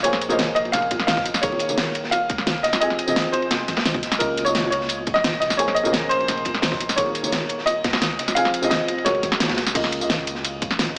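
Warm and dreamy, this short cut from a longer liquid drum and bass piece moves at 173 BPM in Db major, drifting through soft jazzy chords such as Bbm11, Eb7sus4, Fm7 and Db69. A bright, brilliant baby grand piano carries the melody in a short-sustained upper register with tape echo, while a felt-muted upright piano supplies an intimate, mellow accompaniment beneath it. Deep in the background, a round sine sub bass holds the low end with a fast attack and sustained notes. The drums are layered: an up-front pop kit with a fat snare, metallic hats, crash and tambourine sits over a gritty, saturated breakbeat kit of dark ride and medium-tuned snare, filtered and tucked behind, while ringing bongos and congas with hard hands add texture. A punchy electronic kick enters at 0.9 seconds and drops out briefly from a band accent at 9.4 seconds, and the whole mix has a moderate plate reverb and a small-speaker character.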